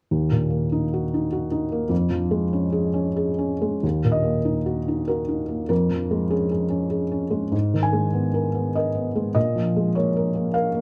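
Neoclassical minimalist piano in a wistful, intimate mood, this short excerpt features a solo felt-muted upright piano, soft, mellow and close up front, playing in Eb minor with rubato in 3/4 at about 87-104 BPM, moving through Ebm, Db/F, Abmadd9 and Bbm7 chords across a range from Eb2 to Ab5 until 10.8 seconds, set in light reverb with a dark production.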